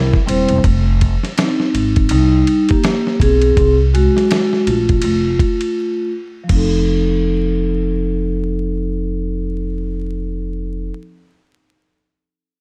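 Cool and mellow, this jazz-hop fragment from a longer piece moves at 82 BPM in 4/4 with a swung sixteenth feel, as a ringing, soft-mallet vibraphone with its motor off takes a low-pass-filtered solo under a filter sweep from 0.6 to 6.5 seconds over chords such as Fm9 and Ab13b9, a woody pizzicato upright bass on gut strings sits up front beneath it, and a gritty, compressed sampler-style soul drum kit with a thumpy kick, snare, hi-hat, ride and crash drops into a break at 5.8 seconds, the mix wrapped in light small-room reverb and dusty vinyl crackle.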